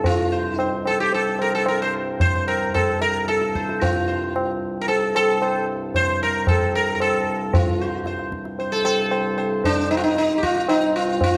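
Longing and introspective, this short excerpt of Hindustani classical music in raga bageshri on C moves in 7/4 at 113 BPM, with a straight feel that gradually speeds up, and it is tuned slightly below concert pitch to A4 = 437 Hz. An up-front sitar carries the melody with a bright, buzzing, shimmering tone ringing with sympathetic strings and touched by slapback echo, while a high-tuned tabla sounds close and dry. A hand-pumped harmonium holds a soft, reedy, breathing drone low underneath, all set in a dark production with moderate concert-hall reverb.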